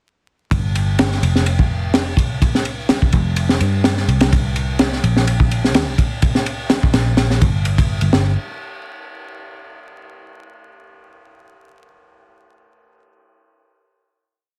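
Energetic and funky, this short breakbeat piece drops straight into its groove at 0.5 seconds and rides a gently swung sixteenth-note feel in 4/4. A crunchy, looped breakbeat with edits sits up front, built from a punchy kick, a high-tuned snare and dusky ride cymbals, its small-room acoustic sound saturated and gritty with a rolled-off top. Underneath, a picked electric bass plays long gliding notes in a low register, its amped tone foam-muted and round. The drums stop at 8.2 seconds, the bass holds on until 8.4, and a final note carries the piece to its close at 10.0 seconds. The mix is dry and the master dense and heavily limited, with a layer of vinyl crackle adding a worn character.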